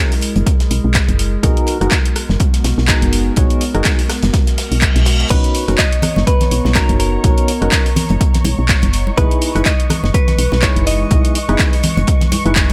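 A dry, close-sounding mix opens this relaxed, sunny slice of deep house, cut from a longer piece and riding a gently swung groove. An up-front, punchy kick and a tape-tinged analog drum machine with claps, rim clicks, hi-hats and crashes drive the beat, while a very quiet studio kit adds hi-hat and a medium-tuned snare underneath. A woody, round FM bass sits low and dark, and hollow, percussive organ stabs with chorus and tape echo pump against a warbling, nostalgic, lo-fi pad of mellow sustained chords moving from F#9 and G#m9 toward Bmaj9 and Emaj7. A reverse cymbal sweeps in at 4.6 seconds, and at 5.3 seconds a bright, twangy clean guitar melody arrives with subtle chorus and digital delay, backed by a silky string pad tucked in the background. Hard-hand congas join at 6.0 seconds, adding an acoustic snap to the electronic pulse.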